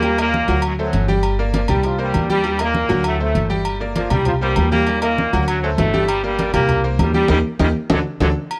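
A driving, straight 4/4 at 198 BPM powers this fiery salsa cut in G minor, where a tight, brilliant trombone section with light vibrato carries the melody over a worn, bright concert grand piano with audible action noise, a woody, thumpy pizzicato upright bass, ringing agogo bells and timbales, and thin-skinned, low-tuned congas, heard in a dry, close 1970s-style studio sound, with a band accent at 7.3 seconds and a drum fill at 7.9 seconds.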